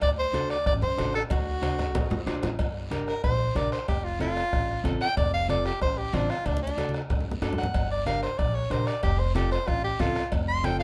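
A breathy soprano saxophone sits up front, its whispered, intimate tone carrying a touch of vibrato and a soft attack as it takes a pop-style solo from 2.6 seconds onward in this fiery, danceable cumbia in G minor at 186 BPM. Beneath it, a woody upright bass played pizzicato anchors the low end, while a mellow, dark electric guitar enters at 0.3 seconds with clean, fingered accompaniment. The percussion is full and layered: close, thick-skinned congas with a low tuning, a bombo struck with a soft beater that sounds distant in a large room, ringing metal-shelled cowbell and timbales set in the background, and a raspy, vintage guiro that stays band-limited behind the rest. Drum fills mark the turn from the opening passage into the solo and return midway through it, as the harmony moves from D7 to a cycle of Gm, F and D. A moderate studio reverb gives the whole passage a sense of space, and the clip is cut from a longer piece.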